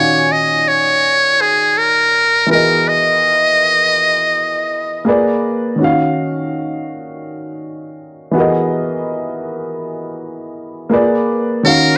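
Sultry and soulful, this R&B fragment moves at 82 BPM in 4/4 with a swung sixteenth-note feel, set over extended chords like Ebm9, Emaj9#11 and Bb7b9. A dark, woody, vintage upright piano carries the accompaniment throughout, mellow and up front, while a buzzy, thin trumpet with a metal mute sings the melody with vibrato and scooped notes, playing until 5.1 seconds and returning briefly at 11.7 seconds. Both parts carry a cassette-tape character, heard as a home recording with moderate studio reverb.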